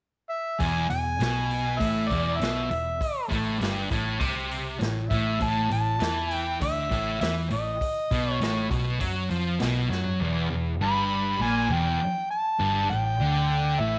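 An overdriven, gritty harmonica leads from 0.3 seconds, its amplified solo sitting up front with vibrato, tongue slaps and scooped notes, all given a slapback echo. This swaggering, raunchy blues rock power trio piece with a southern rock streak, in a straight 4/4, is driven by a dark, double-tracked fuzz guitar riff and a round, foam-muted electric bass moving through E, A5 and B7 and then Em. An acoustic drum kit with a punchy kick and medium-tuned snare plays a fill at 9.9 seconds and stops at 10.2 seconds, and a moderate echo chamber reverb with small room ambience lends the whole a vintage air.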